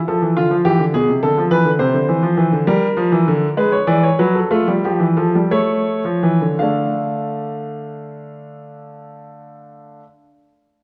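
This is a classical, baroque-style two-part invention for solo grand piano in D minor, in a serious, contemplative mood, taken from a longer piece. It moves in 6/8 at 54-69 BPM counted in dotted quarters, with a straight feel, and the pace slows from 1.8 to 6.6 seconds. The concert grand sits up front with a warm, open tone, deep bass and long sustain, ranging from B2 to F5 and playing from 0.1 to 10.0 seconds. The harmony moves from Dmadd9 through E7/B, Cadd9, Em7b5, E7, Fmaj9 and A before settling on D minor as a new section begins at 6.6 seconds. A wet recital hall reverb surrounds the instrument, and a worn, warbling cassette tape character adds a warbly pitch drift to the recording.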